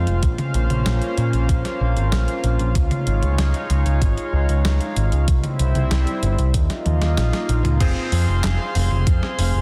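A shimmering, chorused pulse-width pad with 12-bit sampler grit and an overdriven, up-front picked electric bass open this nocturnal, cinematic synthwave excerpt, both pumping under a thumpy overdriven electronic kick and a clean, overdriven 12-bit drum machine of snare, handclaps, hi-hat, crash and toms, with a drum fill at 6.9 seconds before a bright, clangy electric grand piano enters with delayed stabs at 7.8 seconds, all in a dense, heavily limited, dry mix.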